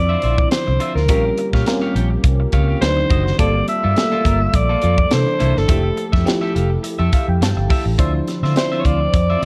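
Dark, polished production with light reverb and a small-room ambience frames this short, glossy, upbeat cut of 1980s jazz-funk pop in a swung 4/4. A growling alto saxophone carries the melody up front, clear yet breathy and raspy, with a gritty vintage edge and vibrato. A tight funk drum kit with a high-tuned snare and a tight kick sits forward in the mix beside a vintage muted fingered bass, whose amped, foam-muted tone is round and dark. An FM electric piano supplies glassy, bell-like accompaniment with a warbling, lush chorus and adds a fill from 6.8 to 8.0 seconds. An electric guitar at the edge of break-up plays a compressed, picked riff, also chorused, while a hollow, flute-like soft pad holds mellow sustained chords in the background. The harmony moves through rich extended chords, from Dm9 through Gm9 and C13 to Fmaj9 before returning to Dm9.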